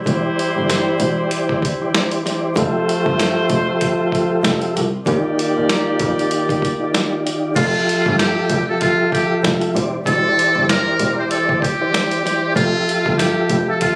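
Roomy, pop-style horn stabs open this confident, soulful, swung boom-bap hip-hop excerpt, riding over a flute-like tonewheel organ with chorus vibrato and key click, a bowed double bass with light vibrato, and a gritty, pitched-down sampler-style kit with a thumpy kick, snare, hi-hat and crash, before the horns drop out at 7.2 seconds and a buzzy, metal-muted trumpet takes a jazz-style solo from 7.6 seconds, the whole mix caught with light reverb as if on a phone in the room.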